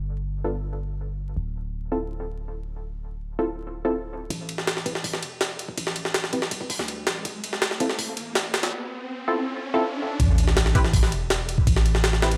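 A straight 4/4 pulse at 163 BPM drives this dark, nostalgic drum and bass and jungle passage, cut from a longer piece. A long sustained 808-style bass, deep and sine-like with a fast attack and mellow decay, sits up front from the opening. It is joined almost at once by a filtered dub chord stab whose detuned sawtooth tone is muted and evolving, shaped by chorus and dub echo over chords moving between Dm7 and A5. The jungle sampler-style drum kit arrives at 4.3 seconds, gritty, compressed and pitched up. Its thumpy kick, high-tuned snare, hi-hat and ride cymbal carry a tape-tinged character and the air of a large room. During that build-up the stab passes through a filter sweep, and an electronic riser enters at 7.2 seconds before the drop and sub-drop impact land at 10.2 seconds. Light reverb and vinyl crackle lend the recording a nostalgic texture.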